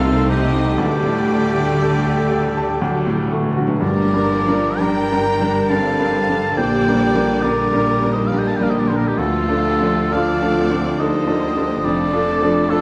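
A tragic, passionate excerpt of a romantic classical movement for piano and orchestra in G minor, moving in a rubato 3/4 at roughly 59-71 BPM, with a clear, intimate baby grand piano up front carrying the melody alongside a focused violin section in the background, while a warm oboe and a second, soft-attacked violin section weave second lines. Early on, an airy flute group and a dark, distant clarinet add brief counterlines and a mellow bassoon adds accompaniment; throughout, a very quiet viola section fills in accompaniment, a mellow horn section holds sustained chords, and lush cellos and double basses anchor the bass. Very quiet timpani struck with hard mallets enter at 0.8 s and play a fill from 2.8 s into the shift to G minor at 3.8 s, all set in a wet concert hall reverb, with the piano's action noise and long sustain audible.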